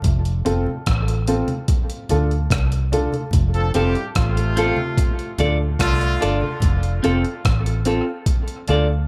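This hazy, laid-back dub reggae passage opens on a gritty, pitched-up breakbeat drum kit with a thumpy kick, hi-hat and rim click, sitting up front beside very quiet, distant congas with a thick, low-tuned skin. A round, punchy, foam-muted electric bass joins at 0.1 seconds in the low register. Then a dark, woody upright piano, with audible action noise, plays stabs treated with dub echo. The tempo is a relaxed 73 BPM in straight 4/4, alternating between F major and D minor. A clear, smooth-topped horn section adds a second line from 3.5 to 6.4 seconds, and a bright, twangy clean electric guitar enters at 3.8 seconds with accompaniment, both carrying dub echo. The small room's light reverb frames a short cut from a longer piece, and the congas stop at 6.8 seconds.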